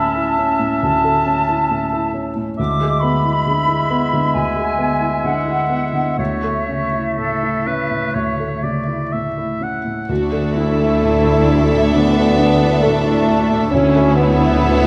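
Bathed in a wet scoring-stage reverb, this tender, uplifting cinematic film-score fragment moves in a slow, rubato 4/4 at 60-69 BPM, opening with a dark, mellow baby grand piano with audible action noise and a thumb-plucked, ringing harp beneath an up-front, airy flute group, a clear oboe with light vibrato and a background clarinet, before at 10.1 s a soft, sul tasto chamber violin section takes the melody over lush studio violins, smooth violas, punchy up-front French horns, intense cellos and focused double basses.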